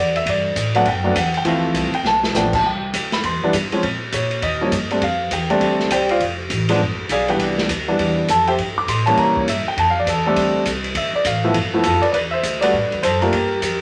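A warm grand piano leads this swinging jazz piano trio excerpt, sitting up front with a natural tone and carrying the melody as a solo from the start until 12.1 seconds. Upright bass, plucked and woody with steel strings, holds down the low end beneath it, while an open jazz drum kit enters at 0.2 seconds with dark, smooth cymbals, a medium-tuned snare and a boomy kick, its rolled-off top giving the kit a rounded, small-room character. A drum fill at 2.1 seconds sets up the return of the opening section, and the harmony moves through sophisticated colours such as Bbm, G7b9 and C7b9 before landing on E9sus4 as a new section begins at 12.1 seconds. The brisk swing feel keeps the mood sophisticated throughout. A wet studio reverb surrounds the trio, and the piece is cut from a longer performance.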